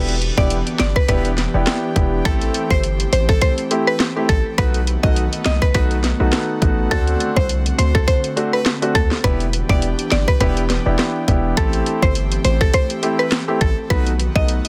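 A mallet-like synth pluck carries the melody from the opening moment, its woody, round tone given a chorus shimmer and digital delay, while a grand piano with short sustain plays accompaniment and an airy, breathy pad holds sustained chords beneath, both breathing with sidechain pumping. The island pop drum kit enters at 0.1 seconds, up front with a tight kick, a sharp, soft-clipped snare, rim clicks and hats. A hard-hitting 808-style bass sits heavy and punchy in the low end, its fast attack decaying under each note. This is tough, sultry dancehall in E minor at 103 BPM, with a 16th-note swing of 56% giving the groove its lilt. The harmony cycles through Em7, Am7, B7 and D7 over roughly 14.7 seconds cut from a longer piece. The mix is dry, dense and heavily limited, with the drums, bass and piano pushed forward and the pad sitting softer behind them.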